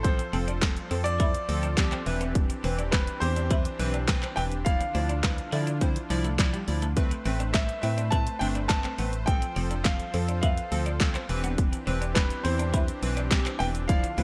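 Dance-pop with a summery, carefree mood, moving at 104 BPM in a straight 4/4 in C major, cut from a longer piece. A clear, smooth concert grand piano carries the melody with a digital delay. Round, detuned analog keys with chorus play the accompaniment, and a short synth keys fill arrives at 1.5 seconds. A soft supersaw holds sustained chords beneath, and a hollow, organ-like FM bass gives a dark, percussive low end, all three pumping with sidechain. The up-front house drum kit has a punchy kick and snare, handclaps, hi-hat and shaker under gated reverb. A bright, twangy twelve-string electric guitar enters at 0.2 seconds with a riff in the background, bathed in lush chorus. The chords cycle through F, Cmaj7/E, Dmadd9 and Amadd9 under light reverb, giving the piece a bright 1980s-style digital sheen.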